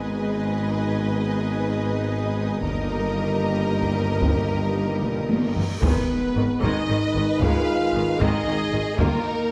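Taiko drums struck with hard sticks stand out most in this triumphant, heroic excerpt of epic orchestral film score, entering at 2.6 seconds with a distant sound that suggests a large room. Moving at 76 BPM in 6/8, the passage shifts between Abm and Eb/G, with a warm violin section carrying the smooth, vibrato-rich melody over a focused second violin line. A viola section adds accompaniment in the background, and a clear string section holds sustained chords until 5.8 seconds. A very quiet, mellow French horn section holds sustained chords while a tuba and a rich cello section anchor the bass, with a double bass section joining in briefly and then returning at 5.8 seconds. Just before that point, a drum fill and a huge, dark cymbal swell lead into an impact at 5.8 seconds, as a bright, tight trombone section adds sustained chords in the background, and moderate scoring stage reverb blends the lush bowed strings and brass into one grand space.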